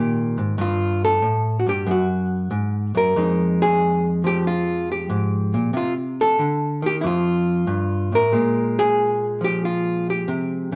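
A miked and amplified archtop guitar plays alone, up front and clean, its dark hollow-body tone picked through a sophisticated solo jazz passage at 93 BPM in 4/4 with a swung eighth-note feel. Lush chords such as Abmaj9, Gbadd9 and Fm11 pass through a Cm and F before settling on Bb7, all set in a stone room reverb that lends the playing a warm, live quality. This excerpt lasts about 10.8 seconds and is cut from a longer piece.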